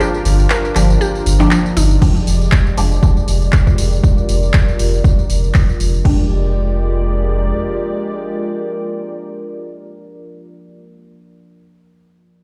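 Hypnotic and late-night, this deep house cut moves at 119 BPM in 4/4 with a light swing on the sixteenths, centred in F dorian. A smooth, vintage-sounding analog pad holds sustained chords with lush chorus, while a muted, detuned dub chord stab, coloured by phaser, ensemble chorus and delay, and a moody ambient pad with built-in reverb both breathe with sidechain pumping. A round sine sub bass with tube saturation sits up front. Early on, a woody, mallet-like FM pluck carries a brief melody in the background, and a punchy analog drum machine with overdrive supplies crash, handclaps, hi-hat and tambourine. An overdriven electronic kick arrives at 2.0 seconds as the harmony shifts from Gm7 to Fm69, and a filter sweep moves across the analog pad through the middle section. The drum machine and kick fall away at 6.2 seconds and the bass at 7.5, leaving the pads and stabs to ring out in a large studio reverb that suggests a big sound system in a bare room.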